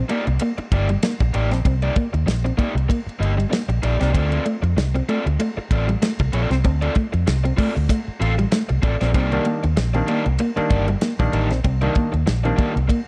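Funk at 96 BPM in C dorian, this sly, funky excerpt rides a swung 16th-note feel over Cm9 and Dm7 chords. A dry, damped 70s drum kit with dark cymbals and a tight kick sits up front beside a round, punchy, foam-muted fingered bass. A slightly broken-up guitar riff and a crunchy, overdriven picked guitar part share a springy reverb. At 9.3 s a stringy, percussive overdriven clav adds stabs in a plate reverb, all within a dark, warm production.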